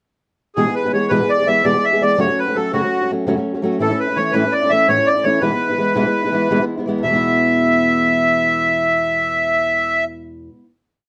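Celtic folk in the form of a bright, cheerful slip jig in 9/8, a complete short piece in which a reedy accordion with a slow beating shimmer carries a motif-based melody in balanced period phrases, sitting up front from 0.6 seconds. Beside it, a fingerpicked old ladder-braced acoustic guitar with dark, woody, boxy old strings plays steady eighths in open chord shapes, moving through a simple E, F#m and A progression. The tune gives way to a held final chord at 7.0 seconds, with the guitar ringing on to 10.7 seconds in a close, detailed recording touched with light reverb.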